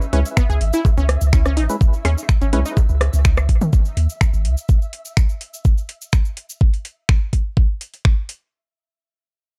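Minimal techno with a hypnotic, clinical mood, this brief cut from a longer piece sits entirely in a drop over a single minor chord. An overdriven, knocking electronic kick arrives at 0.4 s and sits up front beside a deep, punchy sine sub bass with a pitch-drop attack and sidechain pumping, which holds until 4.6 s. Around them, a layered garage kit adds finger snaps and metallic hi-hats with overdrive, while a tape-warm minimal click kit scatters percussion blips, rim clicks and toms through tape echo. A squelchy, resonant sawtooth blip pluck carries a bright, detuned riff with chorus, tape echo and pumping, and a hollow, organ-like stab plays alongside in a dark, percussive tone with chorus and echo, both finishing by 2.7 s. Deep in the background, a flickering granular texture with built-in reverb and pumping hangs on a single high note, and an acoustic cabasa adds a bright, grainy small-room tone, all within a dry, dark production.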